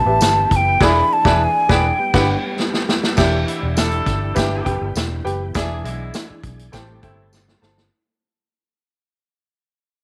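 Joyful and warm, this short cut from an uptempo 1960s-style soul tune at 101 BPM in straight 4/4 opens with a breathy, hollow jazz flute melody up front that stops at 2.6 s, over a woody upright piano, a smooth tonewheel organ in the background with fast rotary speaker and chorus vibrato, a dark, round, punchy muted fingered electric bass, a vintage drum kit with dark cymbals and a tight kick, a jingly tambourine, and a tight horn section with light vibrato on a second line, as band accents and a drum fill lead into a fade-out from 3.2 s over chords such as G6, E7 and Gmaj7 in light studio reverb.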